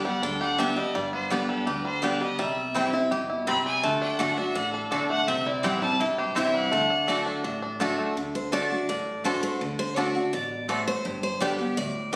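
A biting, up-front fiddle takes the lead over picked acoustic guitar, twangy fingerpicked banjo and a thumpy upright bass in the background, with woody mandolin stabs joining at 0.6 seconds, before the fiddle and banjo drop out and a bright, full-bodied second acoustic guitar carries the melody from 8.4 seconds with plate reverb, all giving this rustic, driving bluegrass excerpt the feel of a phone recording in the room with a faint mains hum.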